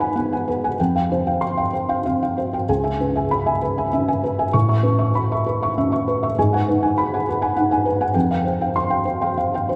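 Melancholic and intimate, this short fragment of neoclassical minimalist piano drifts in 3/4 at roughly 94-103 BPM, its rubato phrasing letting the pulse breathe. A single felt-muted upright piano carries the whole passage, spanning C#2 to C#6 and sitting up front in the mix. Its tone is soft, dark and mellow, with the thick felt giving each note a short sustain, while analog chorus and delay add a gentle shimmer. The harmony moves through G#m7, Fsus2, C#m7 and Aadd9, returning to G#m7 at 6.4 s and Fsus2 at 8.1 s. A plate reverb with a 2.6 s tail soaks the sound, giving the dreamy mix, tuned to A4 = 441 Hz, a hazy, suspended quality.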